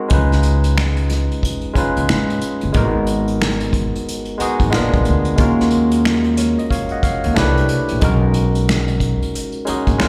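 Late-night and soulful, this brief cut from a longer R&B and neo-soul performance sways with a swung 16th-note feel, heard as a live club gig through the venue's PA with a light, small-room reverb. A bright, barky tine electric piano, lightly overdriven through a combo amp with slapback echo, carries jazzy extended chords from C#7 to Bmaj13, while a woody, thumpy pizzicato upright bass on gut strings sits up front beneath it. An acoustic drum kit played with bundle sticks adds finger snaps, hi-hat, a punchy kick and a medium-tuned snare.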